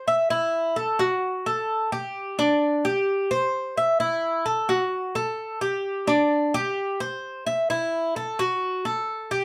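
In a straight 4/4 at 130 BPM, this sunny, relaxed Latin excerpt features a solo acoustic Cuban tres, picked and up front, whose mellow yet metallic double strings, some doubled at the octave, ring between D4 and E5 across the full 9.4 seconds inside a live-sounding room with a wet studio ambience.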